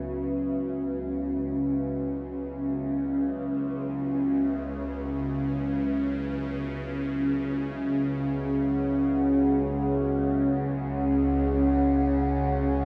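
A huge, wet reverb with a long tail wraps this desolate, dark ambient drone fragment, which moves in free time and is cut from a longer piece. A deep, moody pad of wave-folded, ring-modulated sawtooth and sub-octave tones, with chorus, holds sustained chords up front, shifting from C#m to E6/C# at 7.0 seconds. Beneath it, a tense, string-like bowed drone, detuned, with a noise layer, vibrato and phaser, fades in across the full 12.8 seconds.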